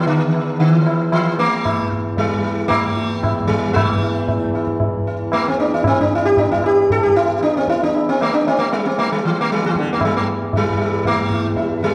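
Bathed in a wet recital-hall reverb, this short cut from a longer Hindustani classical piece in raga Malkauns on E moves at 115 BPM with a longing, solemn air, as an up-front sitar carries the melody with a mellow, buzzing shimmer from its sympathetic strings, a reedy, nasal hand-pumped harmonium holds a low drone, and high-tuned, ringing tabla keeps time.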